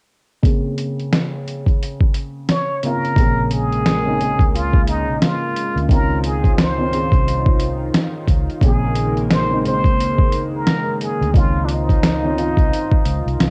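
A soft, dark felt-muted upright piano with audible action noise opens this melancholic lo-fi hip hop excerpt under a filter sweep, alongside an up-front sampler-style drum kit whose gritty, overdriven hits and thumpy kick carry cassette-tape grain. A breathy, distant trumpet with plunger mute takes the melody at 2.5 seconds, its wah-wah tone whispered and intimate, and at 3.2 seconds a lush, detuned unison pad with chorus and a round, punchy electric bass join in. Swung sixteenths and chords alternating between Bbm9 and Dbmaj9 keep the mood reflective.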